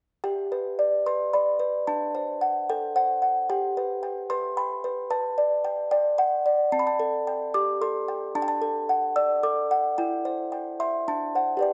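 A delicate, tinkling music box plays alone and up front from 0.2 to 11.7 s, spanning C4 to E6 in this tender, dreamy classical lullaby in G major at 111 BPM in 3/4, its mellow plucked tones tuned to A4 = 444 Hz and set in a moderate recital-hall reverb, in an excerpt cut from a longer piece that moves gently through chords such as G, D7, Am7/C and C/E.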